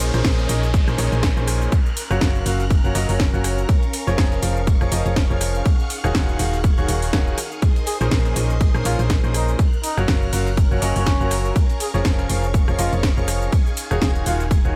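Energetic and soulful, this piano house excerpt is driven by a bright, brilliant grand piano riff with audible action noise and tape echo, over a punchy, round FM bass, both pumping under sidechain, and an up-front, tape-tinged electronic kick, alongside a house kit of cracking snare, metallic hats, rim click and shaker, with a very quiet, gritty breakbeat sampler-style kit layered beneath. In the background, shimmering string-machine violins hold sustained chords with ensemble chorus, a warbling, nostalgic tape-like pad adds detuned lo-fi haze, and an electronic downlifter sounds until 3.7 s. At 7.9 s a veiled, distant trumpet with a bucket mute enters with a classical-style solo melody, its light vibrato roughened by vintage 12-bit sampler grit and tape echo, all in a fairly dry mix over the chords Bbm11, Gbmaj7, Db6/F and Ebm11.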